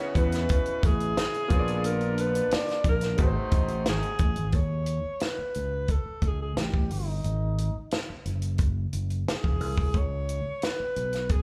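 A straight 4/4 groove from a compact cocktail drum kit with a high-tuned snare and tight kick sits up front beside a fingered electric bass, setting a smooth, cinematic mood for this lush 1970s-style soul piece, heard live through a club's PA with small-room ambience. A breathy alto saxophone carries the melody with subtone, scooped notes and light vibrato, its slapback echo shared with the vintage grand piano in the background and a tight jazz-style horn section playing stabs. A very quiet French horn section holds sustained chords, and the piano and horns all drop away by 4.6 seconds, leaving the sax, bass and drums to carry on until 11.4 seconds.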